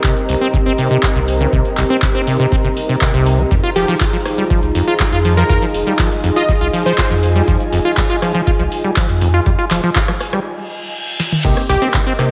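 A squelchy, resonant sawtooth acid bass drives this hypnotic, raw acid house excerpt at 121 BPM in straight 4/4, its riff colored by cassette tape, diffuse ambient delay and sidechain pumping. Beneath it, a deep, tape-warm electronic kick and a booming analog drum machine with crisp snare, metallic hats, handclaps, rim click, cabasa, toms and crash keep the groove, while a round sine sub bass enters at 0.7 seconds. A moody, detuned dark analog pad holds sustained chords with chorus and pumping, and an ethereal, airy pad drifts in the background with ensemble chorus and its own reverb, over a harmony that moves from Cm7 to Fm7 and back. A punchy, catchy unison lead with vibrato and a filter sweep carries the melody from 3.8 to 7.1 seconds through cassette tape and analog delay. A break arrives at 10.5 seconds with a reverse cymbal and a drum fill, and a clear, polished baby grand piano adds stabs from 11.4 seconds as the dreamy mix sits soaked in plate reverb.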